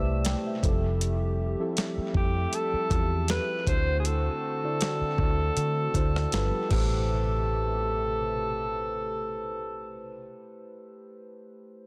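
Late-night and sensual, this excerpt of contemporary R&B in A minor moves at 79 BPM with a light 16th-note swing, as a subtone alto saxophone with scooped notes carries the melody up front through a dub echo, and muted, felt-like synth keys open with a fill before adding intimate chorused accompaniment until 11.9 seconds. A round, foam-muted fingered electric bass and a hollow, flute-like pad sitting in the background fill out chords moving from Am9 through Fmaj9, D7 and G9. A gritty, tape-colored sampler-style drum kit with a thumpy kick, rim clicks and crash plays up front from 0.2 to 6.9 seconds, and light digital ambience gives the mix its echo-heavy depth.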